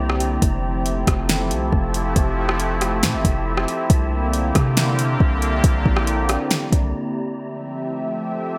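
Atmospheric cloud-rap hip hop with a blissful, floating half-time feel, built on a prominent, airy, detuned sawtooth pad that holds Fmaj9 and C9 chords with chorus and sidechain pumping over a deep, boomy 808-style bass. A smooth, electronic R&B kit with a soft kick, fat snare, metallic hats and rim click sits up front in gated reverb, while a dark, breathy, wind-like noise texture drifts in the background. The drums and bass drop out as a short break begins at 6.9 seconds, leaving the pad and texture to carry on, with a bright 1980s-style digital sheen and plate reverb over the whole mix.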